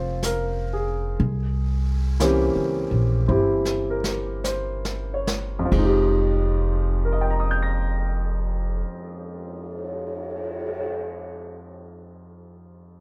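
A clear, open concert grand piano with deep bass sits up front, carrying the accompaniment through this smoky, wistful slow swing jazz excerpt in 4/4 over Bbm7 and C7b9 moving to Fm7, joined by a woody, thumpy gut-string upright bass plucked until 8.8 seconds and a brushed kit with dark cymbals and a boomy kick whose fill runs from 3.3 to 5.7 seconds as the tempo slows, all in a dry studio sound.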